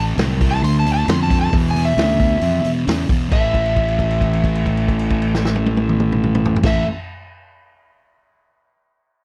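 A growly, fuzz-soaked fingered electric bass sits up front in this brooding, heavy blues rock power trio and southern rock excerpt in A minor at 134 BPM, alongside a sludgy, dark, double-tracked distorted guitar riff, an overdriven slide guitar melody carrying slapback echo, and a punchy vintage drum kit with dark cymbals that enters at 0.2 seconds, all captured in a dry, close 1970s-style studio sound as the harmony moves from Am through Dm and E5 to A5, where a held note stretches from 3.3 to 6.6 seconds.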